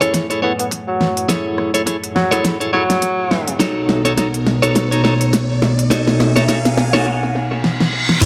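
A breathy, jazz-style tenor saxophone with light vibrato and scooped notes leads this gritty, playful glitch hop excerpt, its low-passed, delayed melody ending at 3.5 seconds over a dark, detuned analog pad with chorus and sidechain pumping, and up-front clean electric guitar stabs. A swung pop drum kit with a fat snare and crisp hats plays fills through the build-up beside a knocking, tape-warm electronic kick. A riser enters at 3.3 seconds, followed by a reverse cymbal at 7.1 seconds, as the chords move from F#m9 to B7. Spring reverb and heavy echo drench the mix, and a very quiet formant-sweep wobble bass surfaces only at 8.2 seconds.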